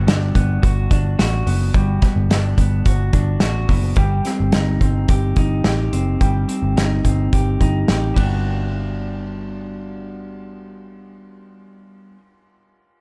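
Jangly indie pop in G major at 108 BPM, this short cut from a longer piece carries a youthful, bright mood over a straight 4/4 feel. An electric guitar through a small old amp plays arpeggios throughout, its picked tone warm, slightly broken-up and compressed, with a digital delay trailing behind it. Beneath it, a vintage muted picked electric bass sits up front with a dark, round, foam-muted and punchy sound. A loose indie drum kit of hi-hat, kick, snare and ride has an acoustic, small-room character with a pumping room sound, a medium-tuned snare and a punchy kick, playing until 8.3 seconds before dropping out as a brief second section begins around 8.4 seconds. The harmony moves from Gmaj7 to Cm at 4.0 seconds and back to Gmaj7, all within a dry, dark and warm production that has little reverb.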